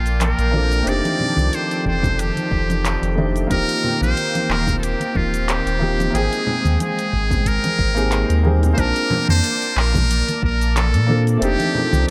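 Sunset chillout at 91 BPM in Bb major with a sunny, warm feel and a light swing, where a buzzy, metal-muted trumpet carries the melody up front through analog delay over a worn, intimate grand piano with audible action noise, a lush detuned pad shimmering with chorus, a deep, round sub bass, an overdriven deep house kit of handclaps, hi-hat and shaker with dub echo, soft-handed vintage congas and a soft electronic kick that drops out at 10.6 s, all tinted by a very quiet glassy texture that stops at 8.8 s as the chords return to Bbmaj7.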